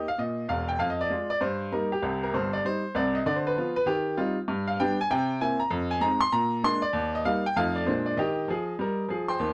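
Swinging and playful, this short cut from a longer stride jazz piece features a solo upright piano with a bright, woody, vintage character, placed up front in a light reverb. Its swung eighths carry the music through a lively run of changes over a range that reaches from deep in the bass up to high treble. The whole passage lasts about 9.5 seconds and comes to rest on the home chord at 8.2 seconds.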